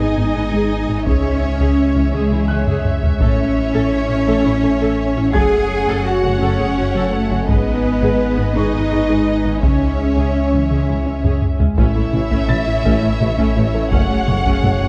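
A brooding, futuristic hybrid orchestral and electronic film cue in C# minor at a slow 56 BPM in 6/8, where lush, vibrato-rich violin sections carry the melody and a second line over viola and close cello sections, a dark, very quiet French horn section, a sawtooth analog pad with chorus, glassy, crystalline wavetable arpeggios, deep sine sub bass, a background double bass section and a faint, boxy grand piano with audible action noise, while close, heavy taiko drums enter at 1.1 seconds with fills and a distant, roomy tuba joins at 11.8 seconds, all set in a moderate concert-hall reverb with a dark, warm production.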